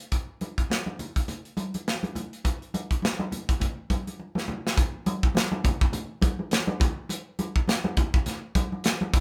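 A 4/4 groove at 103 BPM carries a 16th-note swing that gives this short soul excerpt its smooth sway. A modern studio drum kit of hi-hat, punchy kick and medium-tuned snare starts at 0.0 seconds, sounding acoustic, airy and polished, placed up front in a small room. Congas join at 0.4 seconds with a ringing, medium-tuned tone and soft hands, also up front in a small room. A drum fill at 4.2 seconds leads into a new section from 4.8 seconds, where the two parts continue together to the end. Light reverb and the feel of a band playing live in one room give the whole a warm, smooth character.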